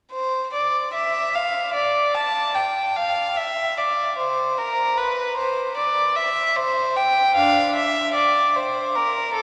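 This is a classical, baroque-style suite movement for unaccompanied violin, dance-like and radiant in character, moving in triple metre with a flexible, rubato feel. A single violin plays alone from 0.1 to 9.4 seconds, ranging from D4 up to A5. Its gut-string tone is nasal and reedy, with an airy bow sound and a period-style manner of playing. The instrument sits close and up front, yet it is bathed in a cathedral reverb that lingers for about 5.3 seconds, so each phrase rings out into a vast, resonant space. The passage is cut from a longer piece and holds to one continuous section throughout.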